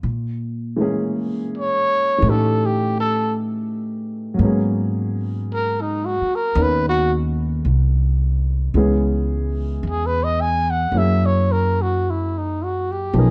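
A natural-toned baby grand piano and a woody, pizzicato upright bass open this wistful, smoky swung jazz ballad fragment, joined at 1.6 seconds by an intimate, whispered trumpet solo with soft attack and mellow vibrato, set in plate reverb over drifting extended chords in a dark, warm production.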